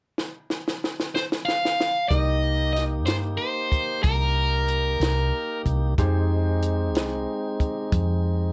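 A lightly reverberant recording opens this brief, mournful slow blues in C minor, cut from a longer piece and moving at 62 BPM in a straight 12/8. A compact cocktail drum kit, dry and up front with a high-tuned snare and tight kick, starts with a fill on hi-hat, kick and snare from 0.2 s. An overdriven, picked electric guitar enters at 1.1 s with a soulful melody between Bb4 and F5, its tone warm and forward. At 2.1 s the band settles onto a Cm9 chord: a dark, round hollow-body short-scale bass, fingered and amped, anchors the low end between C2 and G2. Alongside it, a full, lightly overdriven tonewheel organ with vibrato holds sustained chords, while a woody, polished upright piano adds accompaniment from the background. The harmony shifts to Fm9 at 6.0 s, and the guitar has already fallen away by then; the drums play on until 8.1 s, and the piano, organ and bass carry on briefly after.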